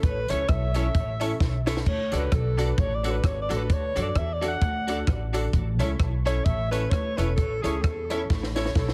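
A heavily compressed, radio-like sound with light reverb frames this joyful, upbeat ska fragment, cut from a longer piece. An alto saxophone with a smooth top and vibrato carries the solo melody in a pop style, colored by analog delay. Up front, a dry compact cocktail drum kit pairs a punchy kick and high-tuned snare with dark cymbals, rim clicks and hi-hat, adding a fill at 1.4 seconds. A woody pizzicato upright bass with steel strings holds the low end, while a clean, picked electric guitar with ensemble chorus and delay sits beside bright, brilliant upright piano stabs that ring with long sustain. A jingly tambourine stays close and dry in the background as the harmony moves from A to D at 1.9 seconds and returns to A at 5.5 seconds.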